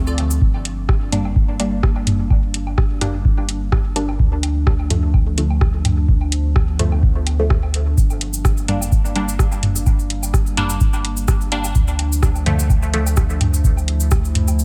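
A warbly, lo-fi pad of detuned, wave-folded chords and a round, mellow sub bass open this nocturnal, hypnotic dub techno excerpt in G minor at 127 BPM, both pumping against the dry, up-front kick that enters at 0.4 s, while an analog drum machine adds metallic hats and rim clicks beside overdriven electronic woodblock and toms. From 1.1 s a muted, detuned chord stab with phaser and dub echo drifts over a slow Gm to Dm progression, and a grainy, bright cabasa returns at 8.0 s to sit with a 16th-note swing in the mostly dry mix.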